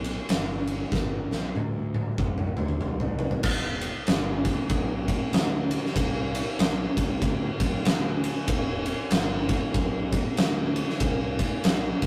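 An oversized, low-tuned acoustic drum kit dominates this sludgy, heavy stoner and doom metal excerpt at 95 BPM in swung 4/4 and E minor, its punchy kick, fat snare and dark cymbals sounding saturated and gritty in a big, pumping room, with a drum fill from 0.9 to 3.4 seconds leading into a new section, while a fuzz-laden, overdriven fingered electric bass with a round tone sits lower in the mix beneath it, the whole captured as a rough rehearsal-room recording with light reverb.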